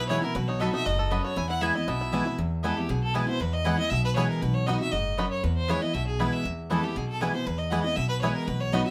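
A straight, driving 4/4 pulse carries this virtuosic bluegrass passage, cut from a longer piece, with the chords moving between B and E. A bright, focused fiddle with light vibrato and a twangy, percussive fingerpicked banjo share the melody, while a full-bodied picked acoustic guitar sits up front in the accompaniment. Double-strung mandolin stabs enter at 0.1 seconds, and a warm, woody pizzicato upright bass anchors the low end, all in a moderate studio reverb.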